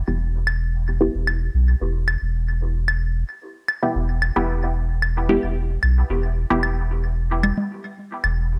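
A pure sine sub bass, deep and smooth with a touch of tube saturation, holds the low end from 0.1 to 8.6 seconds beneath muted, detuned sawtooth chord stabs run through phaser and dub echo until 6.6 seconds, while tape-warm electronic claves and congas trail their own dub echo across this hypnotic 112 BPM dub techno excerpt in E minor, set in light digital ambience.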